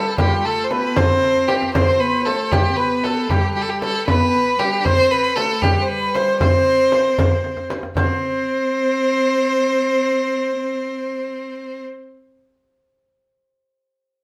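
Stately and warm, this excerpt from a longer Persian modal ensemble piece in 6/8 at 77 BPM, tuned to A4 = 445 Hz, features an up-front bowed violin carrying a rich, vibrato-laden melody over a biting, nasal cello line and a shimmering hammered santur, while a deep tombak and a small, hard-handed frame drum drive the rhythm with fills at 1.2 and 7.4 seconds before falling away at 8.2 seconds, all heard as a live band in one room with a wet studio reverb.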